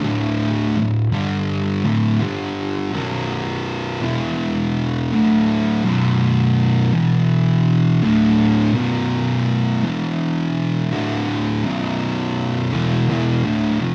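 A straight 4/4 pulse at 83 BPM carries this brooding, hypnotic metal excerpt in B minor, played entirely by a single thick, dark, double-tracked electric guitar drenched in fuzz distortion, picked up front in a low register. After a brief opening that rocks between D5 and G5, the guitar settles at 2.9 seconds into a repeating B5, E5, D5 cycle, finally landing on B minor at 11.7 seconds. A wet studio reverb and a live-room sound with a dulled top end give the riff a murky, enclosed weight.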